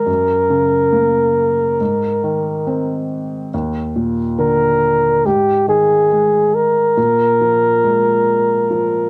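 In a straight, unhurried 4/4, this short fragment of an acoustic folk-pop ballad feels intimate and tender, like a home recording on cassette. A breathy flugelhorn sings the melody up front as a jazz-style solo, with vibrato, scooped notes and a smooth top. Beneath it, a soft, felt-muted upright piano with cassette-tape coloring and audible action noise plays close and mellow in a moderate studio ambience, both parts sounding for the full 9.1 seconds.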